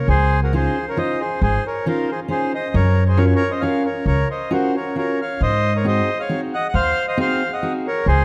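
A reedy, dry-tuned accordion carries the melody up front from the start over a woody, thumpy pizzicato upright bass on gut strings, with a fingerpicked steel-string guitar of warm fresh strings and full body joining at 0.5 seconds. This short excerpt from a longer musette waltz moves at 135 BPM in 3/4 in D-flat major, its bittersweet, nostalgic mood shaped by chords of Dbmaj9, Gbmaj7 and Ab7. The dark production sits in a moderate scoring-stage reverb.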